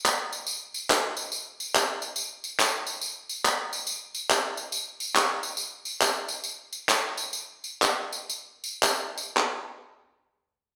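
Up-front acoustic group handclaps and tambourine, with a maraca-like shake, open this reverent, uplifting gospel excerpt at 0.1 seconds in a swung 4/4 between 106 and 142 BPM, slowing down from 5.6 to 9.4 seconds before the percussion stops at 9.7 seconds, all set in a lush large-studio reverb.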